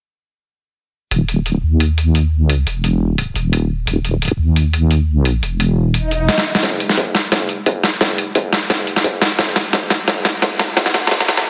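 A half-time drum and bass groove at 174 BPM rides lightly swung sixteenths, carried by a gritty, pitched-down sampler-style kit of hi-hat and snare that runs from 1.1 to 11.4 seconds, while a deep, dark wobble bass with chorus sits up front until 6.3 seconds. An electronic swell rises at 6.0 seconds, and then a distorted electronic kick, re-recorded in a small room, drives a drum-filled build-up, dropping out at 11.2 seconds as the build-up carries on to 11.5 seconds, where an electronic reverse cymbal arrives. The cinematic, spacious cut is bathed in a lush hall reverb yet pressed into a heavily compressed, radio-like sound.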